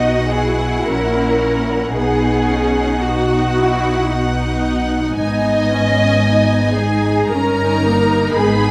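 Tender and lyrical, this slow romantic movement for string orchestra moves at 56 BPM in a rubato 3/4 in B major, cut from a longer piece and unfolding over chords from B through F#7/A# and G#m to D#7/G. A smooth, close violin section carries the high melody with vibrato, while a second violin section adds a lush inner line with soft attacks and expressive portamento, and a focused viola section supplies accompaniment. Cellos with light vibrato and a double bass section anchor the bass throughout the 8.7 seconds, all bowed and set in a wet recital hall reverb.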